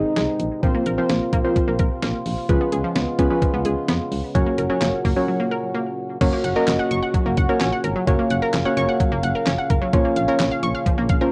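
Melancholic and nocturnal, this synth-pop excerpt at 129 BPM in 4/4 sets a warbling, dusty lo-fi pluck and a distant, roomy brass ensemble holding dark sustained chords over a punchy, round FM bass, with a bright, detuned analog pluck spinning arpeggios through delay and plate reverb while a thumpy, up-front 12-bit drum machine with fat snare, handclaps, hi-hat and crash drives it through a break at 5.3 s into a new section at 6.2 s, all carrying the character of a home cassette recording in a small room, moving from Ab through Db7 and Gb to Bbm.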